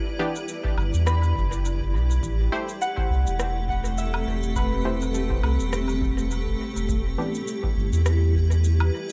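A blurred, detuned granular pad and a ringing, fingerpicked concert harp open this hazy, meditative ambient dub excerpt in A dorian at 103 BPM, the harp's arpeggios trailing tape echo over a swung 16th-note feel. Muted sawtooth chord stabs with chorus and dub echo arrive at 0.2 s, followed by overdriven electronic shaker, woodblock and rim click, a deep analog kick sitting in the background, and a round sine sub bass that enters at 0.8 s and sits up front. The harmony moves from Em7 to Am7 and back to Em7, all within a digital ambience.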